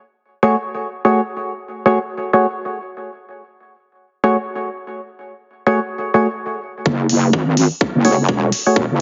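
Heavily compressed and dulled like a radio broadcast, with a moderate plate reverb, this swaggering, aggressive bass house excerpt in F# minor runs at 126 BPM with a swung 16th feel. A hollow, dark, organ-like stab sits up front on an F#madd9 chord from 0.4 seconds, carrying lush chorus and digital delay and pumping to the sidechain, until a filter sweep on the stab opens a build-up at 6.9 seconds. There the heavy, saturated wobble bass enters with a resonant, detuned square-and-sine tone, joined by a tight, up-front kick and crisp hats, both tape-tinged and re-recorded in a large room.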